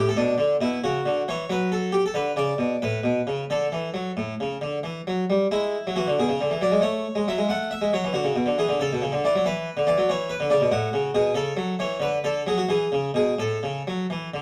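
A solo harpsichord opens the excerpt in a baroque-style suite movement, its Flemish-style tone airy and plucked, sounding full from two sets of strings and placed up front. The music moves in a lilting 12/8 at 91 dotted-quarter beats per minute, with uneven beats and rubato lending a dance-like, radiant character. Harmony begins on B minor, passes through a moment where chords fall away, then settles into A major from 5.5 seconds by way of an E7 chord. From there it travels through B minor seventh, back to A, and closes on a D, E, A cadence at 13.4 seconds. The instrument spans from A2 up to F#5, and a moderate large-studio reverb surrounds it in a dark production, giving the short passage a resonant sense of space.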